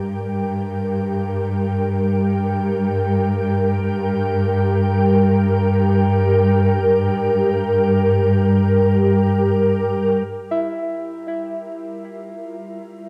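A glassy FM pad carries this melancholic, spacious ambient passage in free time, holding sustained chords from G3 to G5 with a slow attack, long release, ensemble chorus and its own ethereal reverb. Beneath it, a bowed chamber cello section plays a warm bass on G2 with expressive vibrato. Pad and cellos fade in together over the first 10.3 seconds in G dorian, resting on G minor. The cellos stop at 10.2 seconds, and as the harmony moves to Gm7, muted, felt-like synth keys enter with soft, intimate arpeggios on E5, colored by chorus and tape echo. The echo-heavy mix sits in a moderate spring reverb with a cassette-tape character, and the passage is cut from a longer piece.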